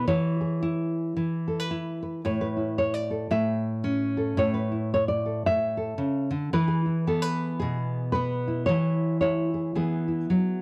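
Gently swung eighth notes in four give this short folk fragment an easy, rolling lilt from its first moment. A lone nylon-string guitar carries everything, its full-bodied, thumb-plucked tone sitting up front with a deep classical character and a warm, peaceful mood. The harmony opens on C#m7/E, settles onto A at 2.2 seconds, and later moves through E and C#m/E before returning to E near the close. A light reverb gives the guitar a touch of space, while the whole recording carries the worn, warbling quality of old cassette tape, with a warbly pitch drift that adds a nostalgic haze. Lasting about 10.6 seconds, it feels like a brief glimpse lifted from a longer piece.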